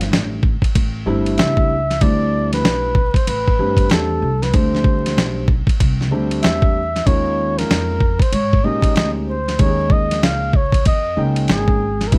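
A cool, nocturnal jazz-hop groove at 95 BPM in 4/4, swung on the sixteenths, this excerpt is cut from a longer piece and tuned a touch below standard pitch. A mellow flugelhorn carries the melody up front for the full 12.2 seconds, its smooth top softened by vibrato and scooped notes in a jazz-style solo voice. Beneath it, a dark grand piano lays down vintage, long-sustaining chords that move from Gsus4 to D9sus4 at 2.0 seconds and then to Eb9sus4 at 7.1 seconds. A pizzicato upright bass with steel strings adds a woody, thumpy low end, while a sampler-style drum kit, compressed and gritty and re-recorded in a small room, sits up front with a fat snare, hi-hat and ride cymbal. Light reverb, vinyl crackle and a dark, warm production give the whole track a dusty late-night haze.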